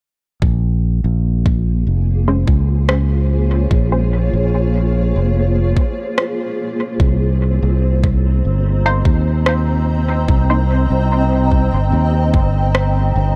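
This deep, meditative slice of ambient dub, cut from a longer piece, opens at 0.4 seconds with a warm fingered electric bass, direct and amped and sitting up front, alongside a soft, overdriven electronic kick drum that is also placed forward and touched with studio reverb. At 1.6 seconds a granular cloud pad drifts in, its slow-attack chords blurred and detuned, evolving under a moving notch and a mellow haze of built-in reverb with a long release. Soon after, a dark, muted dub chord stab appears quietly, its sawtooth filter pluck full-bodied yet brief, colored by a phaser, subtle chorus and dub echo. An overdriven electronic rim click joins the drums, carrying studio reverb and its own dub echo. The harmony rests on Bbm9 before moving to Cm7 at 7.0 seconds, all within a straight, unhurried 4/4 pulse and a light reverb around the whole mix.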